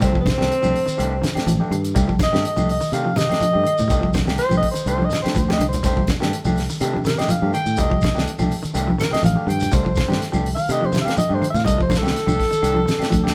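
A breathy alto saxophone with vibrato solos up front across this funky, driving afrobeat excerpt at 124 BPM in C dorian, held on a single Cm69 chord, while a bright, clean picked electric guitar arpeggiates in the background, a slightly broken-up, twangy guitar through a small old amp adds lo-fi stabs, a round, punchy fingered bass anchors the low end, a dry 70s drum kit with a fat snare and tight kick drives the groove with a brief fill at 5.5 seconds, thin-skinned congas and a grainy, distant shekere fill out the percussion, very quiet woody claves tick along, and the whole live band sits in a moderate stone room.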